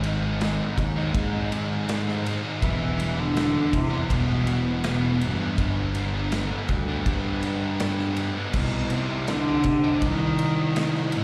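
A straight 4/4 pulse at 81 BPM drives this brooding, angsty stretch of quiet-loud alternative rock, cut from a longer piece and lasting about 11.2 seconds. Up front, a single bowed cello carries the melody with an airy sul tasto tone, light vibrato and a soft attack, its nasal, boxy voice sitting close and intimate under a slapback echo. Beneath it, a growly fuzz bass played with the fingers sounds punchy and forward, while a big acoustic drum kit pairs a boomy kick and medium-tuned snare with bright crash and ride cymbals. Two overdriven, picked electric guitars grind out riffs with slapback echo: a sludgy one in the mix and a raw, lo-fi garage guitar tucked into the background. The harmony moves from G# to Em, then G and Cm, with every part playing from start to finish. The sound is that of a live gig heard through the venue's PA, with small room ambience, recital hall reverb and lossy compression artefacts.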